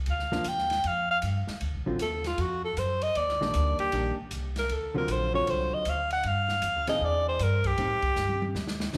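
Opening on a woody pizzicato upright bass, this moody, cool fragment of small-group swing and bop puts a breathy, whispered alto saxophone solo up front over clean, compressed hollow-body electric guitar accompaniment and an airy acoustic drum kit with dark cymbals and a boomy kick, whose fill arrives at 8.2 seconds, inside a moderate recital-hall reverb.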